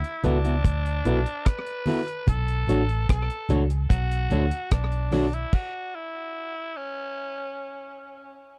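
Smooth and longing, this short lovers rock reggae excerpt sets a growling, raspy tenor saxophone melody with tape echo over a dry, close 1970s-style studio sound. A deep drum kit with a tight kick, a round, foam-muted bass kept up front, a worn, slightly out-of-tune tine electric piano, slightly broken-up guitar stabs through a small old amp and very quiet low-tuned congas move from D69 to Bm7. The band drops out around the stop at 5.5 seconds, and once the drums finish at 5.7 seconds the gritty saxophone carries on alone until 8.4 seconds.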